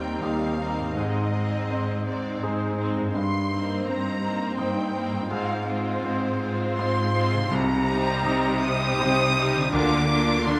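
In a rubato 3/4 at 82 BPM, this uplifting, moving cinematic film-score passage in Eb major sets an expressive, soft-attacked symphonic violin section carrying the melody between C5 and Eb6 over a darker, even second violin line in the background, a brilliant, up-front concert grand piano with deep bass and long sustain, an intense viola section further back, a focused, lush cello section holding the bass, and a very quiet, ringing fingerpicked harp playing arpeggios, heard through moderate scoring-stage reverb of 1.8 s and close, detailed microphones.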